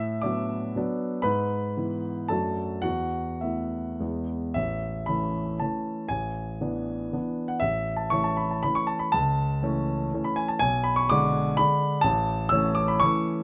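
Rustic and proud, this romantic classical dance in 3/4 sways with flexible rubato between 98 and 136 BPM in A major, tuned to A4 = 441 Hz, as a warm, up-front solo grand piano spanning A1 to E6 plays dotted rhythms, settling on an E chord at 4.0 seconds before the A-major phrase opens at 4.6 seconds, all captured by close, detailed microphones with light reverb in this short cut from a longer piece.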